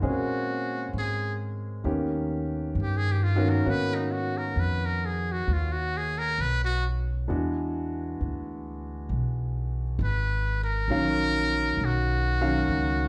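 A clear baby grand piano with long sustain and a woody, thumpy pizzicato upright bass open this slow, melancholic jazz ballad in Eb minor at 66 BPM, with a gentle swing. Almost at once, a metal-muted trumpet takes a wistful solo, its buzzy, thin tone carrying a soft attack and light vibrato, close and up front over chords moving from Bbm7 through Abm11 and E9 to Ebm9. A large, wet studio reverb places the sound a little further back in the room in this fragment cut from a longer piece.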